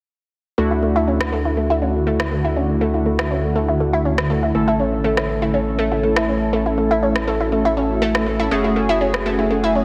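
This expansive, euphoric progressive house excerpt opens at 0.6 s with a round, detuned analog pluck arpeggio and glossy, retro polysynth stabs, both up front, chorused, soaked in dub echo and moving under filter sweeps, over a deep, thick, saturated sub bass. An electronic rim click with a tape-warm, layered character arrives at 1.2 s, and at 1.5 s a dark, shimmering ambient pad joins in the background, its ethereal sustained chords carrying chorus, phaser and built-in reverb as the harmony moves from Dadd9 to A to F#madd9. A lush hall reverb surrounds the mix, which is finished with a dense, heavily limited modern master.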